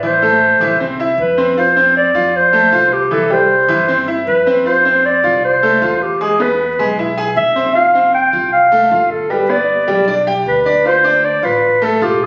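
A breathy clarinet leads this Latin excerpt, its mellow, whispered tone carrying the melody with light vibrato, soft attacks and scooped notes in an intimate, vintage jazz style that sits up front. Beside it, a bright grand piano plays arpeggios with a brilliant, open sound and short sustain, also placed close to the listener. An upright bass, plucked and woody with a thumpy steel-string character, holds down the low end further back in the mix. At 155 BPM in a straight 4/4, the three parts play together from 0.0 to 12.3 seconds over a progression that moves from Am through F, C, E and G before landing on Dm. The mood is nostalgic and warm, and the sound carries the feel of a phone recording made in the room, with club reverb, compression and a generous, wet large-studio reverb around it. The excerpt is cut from a longer piece.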